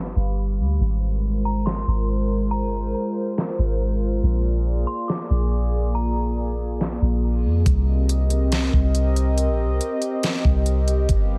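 A warbling, detuned tape-like pad with chorus, reverb and sidechain pumping carries this ethereal, spacious hip hop cloud-rap fragment in half-time over a soft, round 808-style bass, while a metallic, inharmonic FM bell with chorus and delay rings from 1.5 to 6.4 seconds, a smooth R&B drum kit with a knocking kick and deep snare enters at 1.7 seconds, and a heavily compressed, low-pass radio-like digital ambience colours the sound as the chords move from G7 through Ab69 and Bb7 to Cm7.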